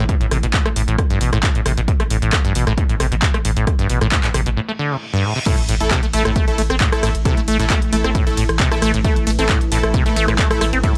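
A dry, gritty hardware recording with little reverb carries this dark, driving peak-time techno excerpt, built on a punchy, tape-warm electronic kick drum and an analog drum machine playing handclaps, hi-hat, ride, crash and rim click. A squelchy, resonant sawtooth acid bass riff sits up front with lush chorus, analog delay and sidechain pumping, over a thick, saturated sine sub bass that also pumps and a very quiet, evolving analog drone with a moving notch. After a short break from 4.6 seconds, a background reverse cymbal and sub drop lead into the drop at 5.5 seconds, where detuned unison supersaw stabs enter with their own delay and pumping.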